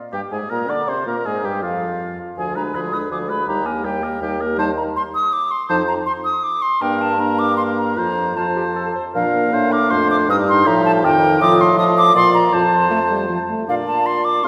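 Lively and cheerful, this quick classical-period movement for wind quintet, cut from a longer piece, moves in a rubato 3/4 at 160 BPM from Eb major into Bb major at 4.6 s, with a pure, crisp-edged concert flute carrying the melody up front, a warm oboe with light vibrato singing a second line, a close-miked French horn and a background clarinet supplying accompaniment, and a mellow bassoon holding the bass, all set in a reverberant concert hall, with a new section arriving at 9.2 s.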